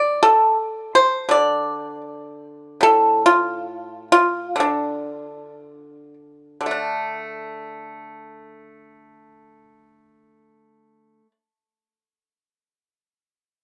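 This Chinese traditional piece for solo plucked strings moves in a contemplative, elegant mood, with a free, rubato feel over a four-beat metre. A single pipa carries the whole fragment, plucked with fingerpicks and reaching from A2 up to D5. Its tone is bright and percussive, placed up front in a dry, close recording with a 1970s studio character and a touch of studio reverb. Over the opening 6.7 seconds the playing gradually slows, before a second passage takes over and runs to about 11 seconds. Cut from a longer work, the fragment ends at 11.3 seconds.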